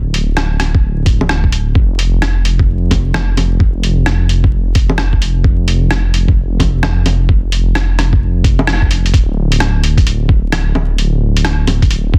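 A dark, detuned saw bass opens this future garage excerpt, rumbling low between D1 and F1 in D minor with a deep, beating, saturated tone shaped by sidechain pumping. A lo-fi sampler-style drum kit enters at 0.1 seconds with bongos, hi-hat and rim click, sounding muffled and pitched down, with soft clipping on the snare. At 0.7 seconds a compressed, thumpy electronic kick drum joins, sitting up front in the mix. The groove moves at 130 BPM in 4/4 with a 64% swing on the sixteenths, giving the nocturnal, ghostly mood a loose, shuffling gait. The full band hits an accent at 8.7 seconds just before a new section begins at 9.1 seconds. Digital ambience and vinyl crackle surround the parts in a dense, heavily limited modern master.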